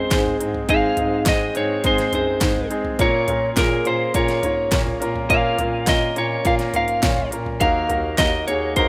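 Hopeful and warm, this short piano-driven pop passage moves at a steady 104 BPM in a straight 4/4, cut from a longer piece and passing from Ab through Bbm to Ebm. A clear, natural grand piano sits up front with the accompaniment while a slightly broken-up, picked electric lead guitar carries the melody, and a mellow, breathy bass clarinet with jazz-style vibrato, close-miked, holds down the low end. Entering at 0.1 seconds, a produced, layered electronic pop kit adds a punchy kick, deep snare, crisp hi-hats, handclaps and toms, all within a rough home-demo mix touched with light reverb.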